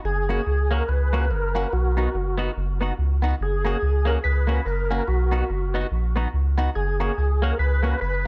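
Ska excerpt with a bouncy, joyful swung feel, where a deep, round dub sub bass sits up front beside a fat, lightly overdriven percussive tonewheel organ carrying the melody through chorus vibrato, key click, a slow rotary speaker and dub echo, while a clean, compressed, fingered electric guitar adds accompaniment through phaser and dub echo, set in a dark production with light reverb and digital ambience.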